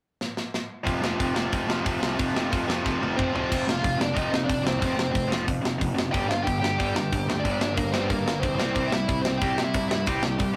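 A dark, overdriven lead guitar sits up front, carrying the melody from 3.2 seconds onward in this angry, raw punk rock clip cut from a longer piece. Alongside it, a tight metal drum kit opens with a fill at 0.2 seconds. Its bright cymbals, medium-tuned snare and tight kick are pressed forward in a studio-room sound, with crash, hi-hat and toms in the mix, and a second fill leads into a new section at 3.5 seconds. Two picked electric guitars drive the riff in straight 4/4: a bright, distorted one that runs to the end, and a compressed, overdriven one that drops out at 3.5 seconds. A growly fuzz bass, heard direct and amped, underpins them as the harmony moves from an F power chord to G minor and then C, captured as a rough rehearsal-room recording with light reverb and saturated grit.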